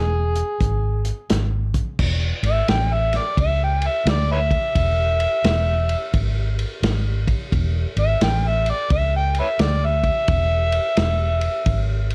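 A swung shuffle in four drives this rollicking electric blues excerpt, where a dark, round, foam-muted electric bass and a muffled, lo-fi acoustic drum kit with a tight kick, entering at 0.4 seconds, back an amplified, overdriven harmonica that takes a gritty jazz-style solo from 2.0 seconds, full of tongue slaps, scooped notes and light vibrato, with all three parts dry and up front.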